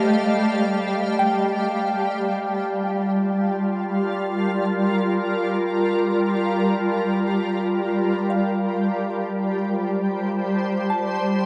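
Spacious and melancholic, this ambient passage in G minor drifts in free time and is cut from a longer piece, tuned a touch low at A4 = 438 Hz. A shimmering, ethereal pad sits up front across the whole 11.5 seconds, holding sustained chords from G3 to A5 with a slow attack, long release, detuned unison voices, an octave-up shimmer and a granular, chorused brightness. A dark, woody cello, one bowed player with vibrato, touches a single A3 with tape echo and falls silent at 1.2 s. Behind them a soft, pure FM synth bell plays gentle decaying arpeggios between A4 and A5, coloured by chorus, phaser and tape echo, fading in from 2.0 s as the harmony moves from F/G to Gm9 and later to Cm/G. The production is dark and warm overall, bathed in a huge, wet reverb with a 9.2-second tail.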